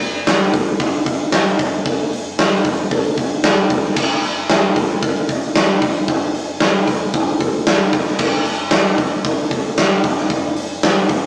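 A huge arena drum kit carries this powerful, energetic rock excerpt on its own, playing at 114 BPM in a straight 4/4 feel. The kit sounds acoustic and natural, set up front with a punchy kick, a medium-tuned snare, hi-hat and crash cymbal ringing in a big room. It plays from the start through 11.2 seconds as a single section cut from a longer piece. The overall sound has light reverb and the rough character of a rehearsal-room recording, with tube saturation and a small speaker tone.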